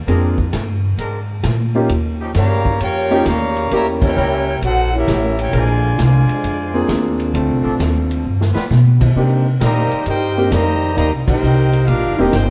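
Big band swing at 132 BPM, joyful and swinging and cut from a longer piece, where a woody pizzicato upright bass and an intimate grand piano with audible action noise move through changes from Bb9 to Cm7 over a distant drum kit with a boomy kick, while a brilliant trombone section holds chords in the background, a tight, bright trumpet section takes the melody from 2.4 s, and a veiled cup-muted trombone section plays a second line, with band accents landing at 3.9 and 11.2 s, heard from further back in a moderate echo-chamber reverb with lossy compression artefacts.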